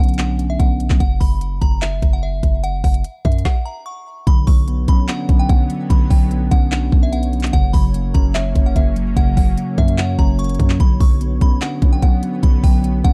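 Trap-inflected hip hop at 147 BPM in a half-time feel, this brooding, hard-hitting cut from a longer piece sits in B harmonic minor, moving between Bmadd9 and F# chords. An up-front electronic trap kit drives it, with a knocking kick, woody snare, crisp hi-hats and handclaps, while a punchy, heavy 808-style bass with a sine core, a noise layer and a fast, decaying attack anchors the low end. Above them, a delicate, tinkling FM tine bell carries the melody high in the register, colored by chorus, phaser and digital delay. A mellow, clean electric piano supplies accompaniment, dropping out during a break from 1.0 s, before a brief stop at 3.5 s. When the second section arrives at 4.3 s, the piano returns and an evolving, full-bodied sawtooth pad enters with a slow attack, filter swell and chorus, adding a bright, detuned layer with a sub octave beneath the dark, dry production.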